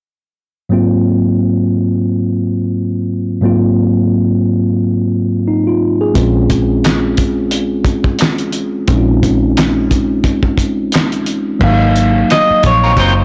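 A mellow tine electric piano opens this late-night, soulful R&B and neo-soul excerpt at 88 BPM in 4/4, its clean chords moving from Ab13 to Bbm9 over a swung sixteenth feel. At 6.2 s a dark, round, foam-muted fingered bass with tube saturation enters together with a cloth-damped, thuddy drum kit, gritty and lo-fi in a small room, with a fat snare, a tight kick with soft clipping, handclaps, hi-hat and a muffled crash. From 12.3 s a compressed, slightly broken-up guitar through a small old amp carries a brief melody with spring reverb. At 12.8 s a second picked guitar at the edge of break-up adds a short line, and the whole recording sounds blown-out and overdriven with light reverb.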